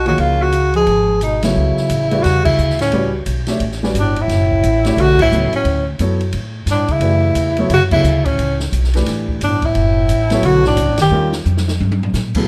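A warm, vibrato-laden tenor saxophone carries the melody up front in this intense, cool slice of modal jazz in F# phrygian, swinging at 176 BPM in 4/4. Beneath it a breathy bass clarinet with scooped notes and a smooth top traces a mellow second line, and both horns stop at 11.3 seconds. A woody, thumpy pizzicato upright bass and a natural-sounding baby grand piano fill out the harmony, moving from a rootless Eadd9 through F#m7 and Dadd9/F# before landing on D#7. The open jazz kit, heard in a small room with dark cymbals and a boomy kick, stays low in the mix, joining the band on its accents and closing with a fill from 11.5 to 12.1 seconds. Light reverb surrounds the group, and lossy compression artefacts mark this fragment cut from a longer piece.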